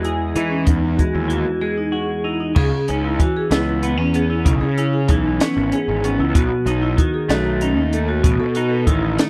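Playful and intricate, this brief math rock and midwest emo passage, cut from a longer piece, moves at 64 BPM in a straight 6/8 felt in dotted quarters, with tuning at A4 = 439 Hz. A clean electric guitar with analog chorus supplies twangy, picked accompaniment up front, while a vibraphone struck with medium mallets spins ringing, metallic arpeggios colored by a fast motor vibrato. Underneath, a fuzz-laden picked electric bass with overdrive punches through brightly, and a compact cocktail drum kit (crash, hi-hat, punchy kick and a high-tuned snare) sits close with a dark, rolled-off top. The harmony opens on Emaj7 and Emaj9, a break arrives at 1.6 seconds, and from 2.6 seconds the second section settles onto C#m7 before turning to B7 at 6.4 seconds. The sound is dry and close, evoking a 1970s studio with little reverb.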